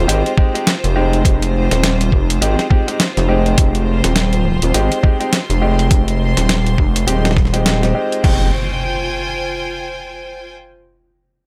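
A dry, up-front glitch hop fragment with little reverb, cut from a longer piece and running at 103 BPM in 4/4 with a swung sixteenth feel in F minor. The mood is funky and gritty, built on a compressed, pitched-down sampler-style kit: a thumpy electronic kick, a medium-tuned snare, hi-hat and crash cymbal. Beneath them a saturated, nasal synth bass growls with wave-folded, resonant edges and a filter sweep across the opening Fm9 passage. A brilliant grand piano drops short stabs colored by vintage 12-bit sampler grit, tape echo, a low-pass filter and sidechain pumping. A bowed studio string section adds a biting, intense ensemble texture with light vibrato, also shaped by sidechain pumping. At 8.2 seconds the harmony shifts to Fmadd9, an electronic impact lands at 8.3 seconds, and the strings carry on until 10.5 seconds.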